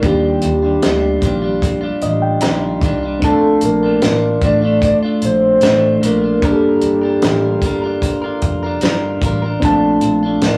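Nostalgic and laid-back, this slow 75 BPM indie and bedroom pop excerpt in Bb major drifts through Ebmaj9, Bbmaj7 and Gm7 chords. A mellow, warbling synth lead carries the melody with chorus and vibrato, over a compressed clean electric guitar with a warbly pitch drift and a reedy, worn, slightly out-of-tune electric piano that adds a short fill between 1.6 and 3.2 seconds. Underneath, a dark, round, foam-muted picked bass and a cloth-damped, thuddy drum kit with a fat snare, tight kick and rolled-off top sit in a rough rehearsal-room sound with saturation and small-room ambience.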